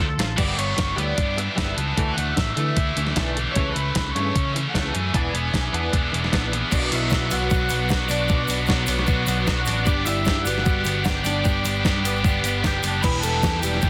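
A straight 4/4 pulse at 152 BPM drives this jangly, wistful indie rock excerpt. The opening brings a brief drum fill from a crisp 8-bit drum machine whose thumpy kick, medium-tuned snare, hi-hat and crash sit up front with a tape-warm, small-room character. From the very start, a scooped high-gain guitar grinds out a distorted riff alongside a twangy, compressed electric guitar that chimes through ensemble chorus and digital delay, while a picked electric bass adds a growly, punchy low end. From 0.4 seconds a raw garage guitar carries the melody high in its range, overdriven and colored by phaser and delay, over very quiet sustained chords from a buzzy vintage combo organ with heavy vibrato. The harmony moves through G6, Dadd9, A/C# and E7 before shifting at 6.7 seconds to Bm, G and Em, where a bell-like tine electric piano enters in the background with a second line through delay and a grainy tube shaker joins. 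The mix is dense and heavily limited in a modern style, wrapped in digital ambience.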